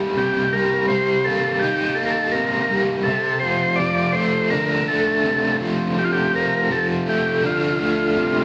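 A wet, large-room reverb surrounds this short clip of a band playing live together, a trippy, dark rock piece at 83 BPM in 4/4. Up front, a double-tracked, overdriven electric guitar picks a shadowy riff through a tremolo effect, and at 0.2 s a buzzy vintage combo organ enters with a clean melody soaked in heavy vibrato. The harmony moves from Cm7 to Dm/C at 3.1 s.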